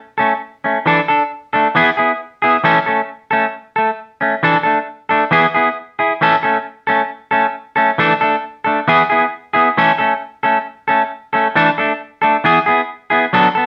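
A clean, fingered semi-hollow electric guitar plays alone from 0.2 seconds, sitting up front with a warm, hollow-body tone and a slapback echo as it cycles through A, Dsus2 and E chords between E3 and A4. This carefree, danceable highlife passage moves at 135 BPM in a straight 4/4 in A major, set in a light reverb. The clip is cut from a longer piece, and the guitar rings on until 13.7 seconds.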